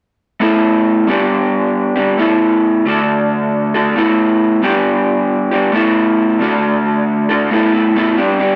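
This is a short rock piece with an upbeat, carefree mood, cut from a longer performance and played at a brisk, straight pace in 4/4. A single electric guitar through a small old amp carries the whole thing alone from 0.4 to 8.6 seconds. Its picked tone is dark, slightly broken-up and lo-fi, sitting up front in the mix with a slapback echo trailing each note. The chords cycle through Asus2, G, Asus2 and D, then the passage shifts into a new section at 7.5 seconds, landing back on Asus2. A moderate spring reverb gives the guitar a roomy, vintage character.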